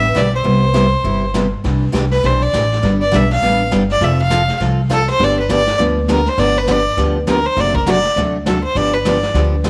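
A clear, nasal fiddle leads this playful, down-home western swing excerpt, bowed by a single player with a light vibrato and an earthy edge, taking a solo from 1.6 seconds on. The tempo is a brisk 202 BPM in 4/4 with a swung eighth-note feel, set in C major. A bright, picked steel-string acoustic guitar supplies the accompaniment, while a woody pizzicato upright bass sits up front beneath it. A jazz drum kit played with brushes enters at 0.2 seconds and stays in the background, its boomy kick and medium-tuned snare softened by a rolled-off top. The harmony moves from Cmaj7 and Cadd9 through G, F and G7 before a D7/F# turns back to G7, and light reverb gives the band a small-room ambience.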